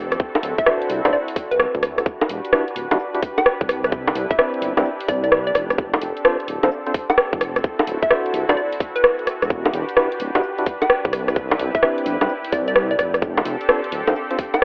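This is a bouncy, soulful stretch of two-step UK garage at 129 BPM, cut from a longer piece, with a 66% swing on the sixteenths and a hazy, lo-fi character that suggests a home cassette recording heard through a telephone-like filter, all washed in a moderate spring reverb. A tight, up-front electronic kick and a layered garage kit of bongos, cabasa, rim clicks and warm hats sit loudest in the mix, both carrying studio ambience and tape grit. Underneath, a dark, detuned saw bass rumbles and beats between D1 and D2, its saturated unison tone sustained from the opening until 14.1 seconds. A quiet analog pad holds smooth, detuned chords with chorus, tremolo and sidechain pumping through a cycle of D9, Em9, Cmaj9 and F6 that comes around twice. From 0.6 seconds a hollow square-wave pluck carries the melody between B4 and G5, and from 0.7 seconds a full-bodied, wave-folded organ stab punctuates the groove, both passing through chorus and tape echo.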